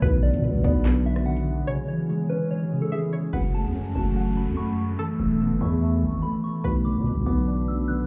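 This short cut from a longer drill track sounds as if it is heard muffled through a wall, with club reverb and a faint mains hum hanging over a cold, menacing hip hop groove at 145 BPM in a half-time feel, in F# minor. A felt-muted upright piano sits up front with a dark, intimate tone, while a growling, buzzy 808-style bass pushes low underneath. A soft, pure FM synth bell carries the melody through chorus, phaser and a low-pass filter, and a bright, twangy resonator pluck with chorus and digital delay adds a quieter second line. An ethereal, detuned pad holds sustained chords in the background through ensemble chorus and its own reverb. The drill kit's knocking kick, sharp snare, metallic hats, claps and rim clicks play only until 1.5 seconds, and a faint downlifter sits in the background from 3.3 to 6.6 seconds as the chords move from B minor and C# minor to F# minor, E suspended and back to B minor.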